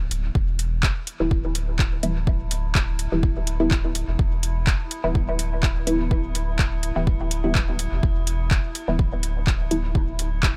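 A swung 125 BPM 4/4 groove of up-front, overdriven electronic kick and an overdriven deep house kit with metallic hats and handclaps in dub echo drives this hazy, meditative dub techno excerpt in E minor, where a round sine sub bass, nasal detuned sawtooth chord stabs arriving at 1.2 s with phaser and dub echo, and an eerie inharmonic FM drone entering at 1.4 s with chorus and built-in reverb all pump to the sidechain in an otherwise dry room.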